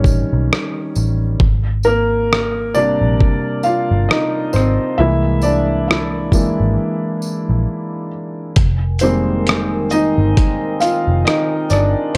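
At a laid-back 67 BPM with a swung sixteenth feel, this reflective, nostalgic lo-fi hip hop excerpt in F dorian is led by a soft, felt-muted upright piano with audible action noise and cassette-tape haze, set over a round, foam-muted picked electric bass, a gritty sampler-style drum kit with a thumpy kick, hi-hat, rim click and shaker, and a faint jingly tambourine, while a detuned, warbling tape-like pad with chorus and reverb drifts in darkly behind them at 8.6 seconds as the chords settle from Abmaj9 and C7b13 onto Fm11.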